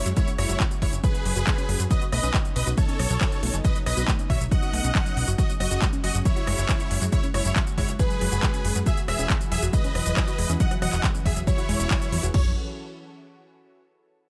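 Uplifting trance cut from a longer piece, emotional and bittersweet, in the middle of a drop: a huge, euphoric supersaw lead carries the melody over a catchy, detuned plucky unison lead, a silky string pad and mellow unison-pluck arpeggios tucked in the background, while a funky, filter-plucked analog bass and a dry drum machine with an up-front punchy kick drive it alongside a layered dance kit of crisp hats, handclaps, rim clicks and shaker, the sidechain pumping through most parts and delay trailing the leads and arpeggios, all with little reverb.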